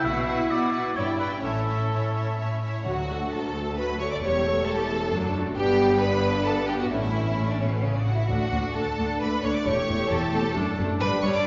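A lively, graceful excerpt of a quick classical-period orchestral movement in triple time with a rubato feel opens with a distant, smooth violin melody over a lush, up-front second violin line, rich violas, clear cellos and even double basses, alongside a soft-edged warm oboe until 2.4 s, before a mellow French horn section enters with sustained background chords at 2.9 s, where round, soft-mallet timpani sound briefly, the whole set in a wet concert hall reverb with vinyl crackle and a dulled top end.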